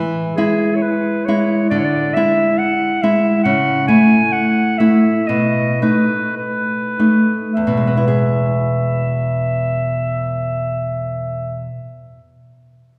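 A lush concert-hall reverb with a long 2.3-second tail surrounds this tender, romantic duo in E major, a short passage cut from a longer piece that moves in a rubato 4/4 between 48 and 71 BPM and slows through its opening 7.6 seconds. An up-front, fingerpicked nylon-string guitar gives a small, intimate accompaniment, its warm tone carrying faint finger squeaks as it moves through E, E7/D, A/C# and B7 before settling back on E. From 0.4 seconds, a bright, vintage-toned clarinet with a soft attack sings the classical-style solo melody up front, and it stops at 11.6 seconds, shortly before the guitar finishes.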